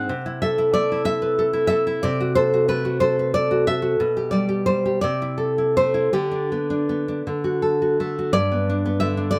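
In a rubato 6/8 sway of 52-63 BPM counted in dotted quarters, this melancholic, intimate romantic excerpt for solo classical guitar in G major features a fingerpicked nylon-string guitar, full-bodied and deep and set up front in light reverb, spanning G2 to F#5 as it moves from Am/C through G/B and G/D to D before arriving on G at 8.3 seconds, where a new section begins.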